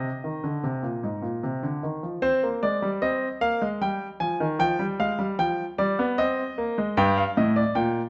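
A warm, polished baby grand piano sits present and up front in a moderate recital-hall reverb, its sound dark and rolled off at the top. This short excerpt from a longer classical piece is a baroque-style two-part invention in C minor, moving at 76 BPM in a straight 3/4 with a serious, driving mood. The solo piano spans G2 to Ab5 over harmony that moves from Cm through Ebadd11 and G7(no3)/F before settling back on Cm and closing on Gm, with a new section beginning at 2.2 seconds.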